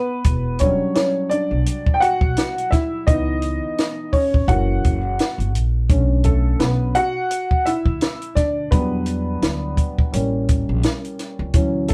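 A dark, worn, slightly detuned upright piano with audible action noise and long sustain sits up front and takes the solo in this nocturnal, mellow jazz-hop excerpt at 85 BPM in B minor, joined at 0.2 seconds by a thumpy pizzicato upright bass on gut strings and a dry compact cocktail kit with a high-tuned snare, tight kick and hi-hat, while swung sixteenths and light reverb give the feel of a band playing live in one room as the chords move from Em7 through C#m9 and F#7 to Bm7, back to Em7 and on to A7b9.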